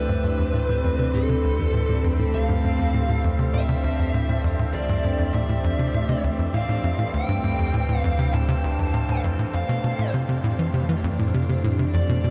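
Bathed in a wet shimmer reverb with a 9.9-second tail, this hypnotic, cosmic piece of sequencer-driven space music in D dorian moves at 100 BPM in 4/4, built on a tight, punchy sawtooth sequencer bass riff with tape echo sitting up front over a deep, round sine sub bass, while an evolving, detuned wavetable pad with chorus holds Dm7 before shifting to Fsus2 at 9.5 s, a resonant, bubbling stepped-filter texture hovers on C4, and a distorted, compressed fuzz lead guitar with tape echo carries the melody between A4 and A5.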